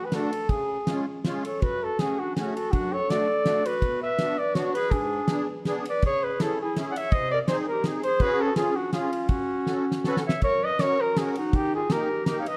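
A warm, lightly vibratoed flugelhorn carries the melody up front in this festive, jolly alpine folk dance excerpt in F# minor at 163 BPM in a swung, rubato 3/4, with a reedy, shimmering musette accordion and a loose acoustic drum kit with dark cymbals, fat snare and tight kick entering at 0.1 seconds, a clear clarinet adding a second line from 1.5 seconds, and a drum fill leading into a closing section at 10.4 seconds, all set in a moderate recital-hall reverb.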